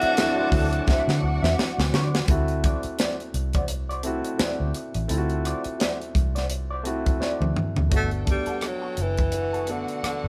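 A breathy, up-front tenor saxophone carries the melody in this lush 1970s-style soul excerpt, heard at the opening and returning at 8.0 seconds, with a clear, bowed string section as a background second line. Underneath, a tight funk drum kit with a punchy kick and high-tuned snare, a round, foam-muted fingered bass, an intimate grand piano with audible action noise, and a slightly broken-up electric guitar riff with wah run throughout on a swung sixteenth-note feel. Early on, a smooth tonewheel organ with slow rotary speaker and mellow vintage horn stabs sit in the background, both gone by 2.3 seconds, while the band plays live together in one room with light reverb.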